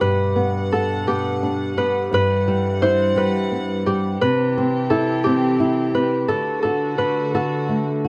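A gentle, innocent children's lullaby in G major, moving at 58 BPM in 6/8 through Gmaj7, Em(add9)/G, C and D: a bright, ringing thumb-plucked Celtic harp carries the melody up front, a dark, thumb-plucked flamenco guitar accompanies beside it, and a quieter studio string section holds bowed, reedy gut-string chords with light vibrato, all in a light reverb across this 8.1-second fragment of a longer piece.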